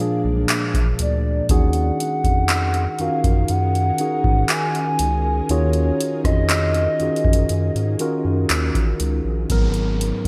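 A hollow, woody clarinet-like synth lead carries the moody, longing melody through chorus and digital delay until 8.2 s, floating over a mellow tine electric piano and an ethereal, airy pad tucked into the background. A round analog bass joins at 0.2 s, and from 0.5 s this contemporary R&B fragment gains a booming analog drum machine, with deep kick, metallic hats, handclaps and rim click in gated reverb. Bright 1980s-style digital production and a lush hall reverb frame the sound, and a downlifter arrives at 9.5 s.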